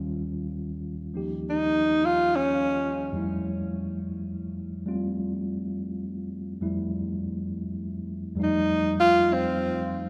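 A mellow tine electric piano opens this romantic, intimate jazz ballad at 0.0 seconds, comping softly in F major on an Eb9 chord with a clean tone that seems to come through its own built-in speakers. The tempo is a slow 69 BPM in 4/4, with a gentle swing on the eighth notes, and the tuning sits slightly low at A4 = 438 Hz. At 1.5 seconds a breathy tenor saxophone steps forward as the soloist, singing a short phrase in its middle register with light vibrato, scooped notes and a smooth top, while the harmony moves to Fmaj9. After a pause the saxophone returns at 8.4 seconds over an F7 chord, its close, airy voice sitting up front beside the piano. A moderate plate reverb with a long tail lends the room a soft glow, and the piece is cut from a longer performance.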